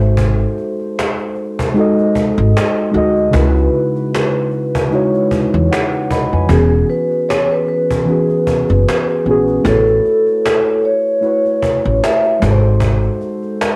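A hazy home cassette recording in a moderate room sound frames this nostalgic, mellow lo-fi hip hop snippet with a lazy swing. Muted, felt-like synth keys, dark and intimate with a chorus shimmer, sit up front beside a woody pizzicato upright bass, while a snappy cajon struck with hard hands sounds distant, as if in a large room, and carries a tape grit. At 6.5 seconds a ringing, metallic vibraphone with medium mallets and slow motor vibrato takes the melody, softened by a low-pass filter and tape character, and it stops at 12.4 seconds over chords that drift from G#7b9 through C#m11, E69 and A69.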